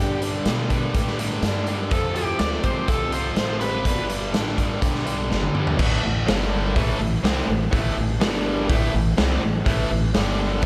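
A warm, overdriven slide guitar with slapback echo carries the melody over a dark, very quiet lead guitar line, a bright, double-tracked riff guitar with spring reverb, and a woody, thumpy pizzicato upright bass, with a gritty, up-front garage drum kit and its boomy kick joining a moment later. This heavy, brooding blues rock and southern rock passage moves at a straight 124 BPM in 4/4, with harmony shifting between G and F. Both guitar lines drop out at 4.1 s, and a drum fill at 5.3 s leads the riff, bass and drums into a section alternating A minor and G5 in a big arena sound with a lush hall reverb.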